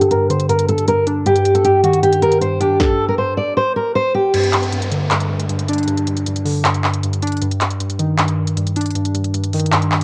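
A dark, fingerpicked steel-string acoustic guitar carries the melody up front with audible finger squeak in a brooding, menacing half-time trap cut from a longer piece, as a filter sweep runs through the opening and a stop lands at 2.8 seconds. Warbling, detuned lo-fi synth keys with chorus and a mellow, nostalgic glow hold down the accompaniment throughout, while an electronic trap kit brings a hard-clipped kick, sharp snare, crisp hats, handclaps and crash. At 4.3 seconds the guitar drops out for a break marked by an electronic downlifter, all colored by light reverb and the hiss of a home cassette recording.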